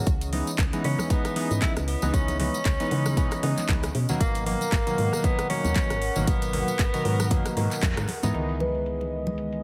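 A warm, vintage tenor saxophone with vibrato and 12-bit sampler grit carries the jazz-style solo from 0.8 to 7.8 seconds, its tape echo trailing over a hypnotic, late-night deep house groove at 116 BPM in C# dorian, swung on the sixteenths and moving between C#m9 and G#m9. Up-front detuned analog keys play bright, round stabs with chorus and delay, and a filter sweep on them begins at 8.3 seconds, while a smooth sawtooth pad holds sustained chords in the background and a dark, woody FM bass pumps underneath. A punchy, layered kick sits up front alongside a house kit of metallic filtered hats, handclaps, rim clicks and crash, with very quiet close congas and a jingly tambourine, and a brief mellow marimba note with dub echo sounds at 8.6 seconds, all through a heavily compressed radio-like sound.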